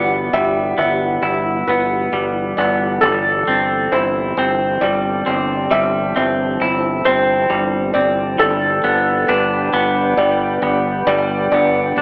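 A euphoric, hopeful rock excerpt moves at a slow 45 BPM in 6/8, with a twangy, clean electric guitar up front playing arpeggios alongside a felt-muted upright piano whose soft arpeggios carry audible action noise, both touched with slapback echo. Beneath them, a growling fingered electric bass with overdrive holds G1, while a deep, warbling ambient pad with chorus and built-in reverb sustains chords in the background. The chords move from Emadd9/G to C6/G at 3.0 seconds and settle on G at 8.4 seconds, all heard through a moderate concert hall reverb and an AM radio sound.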